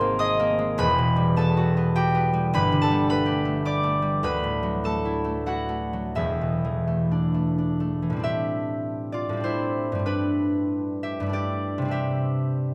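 In a flexible, rubato 3/4 that drifts between 83 and 108 BPM, this brief cut from a longer classical piece for solo concert harp unfolds in A minor with a wistful, gentle mood. The fingerpicked harp sits up front and rings out across a span from E1 to D#6, its colored chords such as G#add9, Emadd9 and D69 settling at 8.2 seconds into a new passage built on Am11, G69 and Cadd9. Close, detailed microphones capture the instrument's acoustic warmth, framed by a moderate recital hall reverb with a 1.6-second decay.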